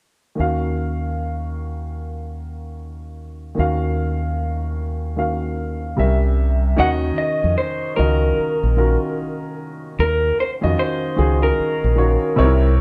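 Opening at 0.4 s, a woody, natural upright piano and a dark, round, punchy fingered electric bass lay down an introspective, soulful R&B and neo-soul groove with a swung sixteenth-note feel over Ebm9 and a brief C7b9, before an electric guitar through a small old amp enters at 6.8 s with a slightly broken-up, lo-fi, compressed picked melody, all heard as a band playing live in one room with light reverb in this passage cut from a longer piece.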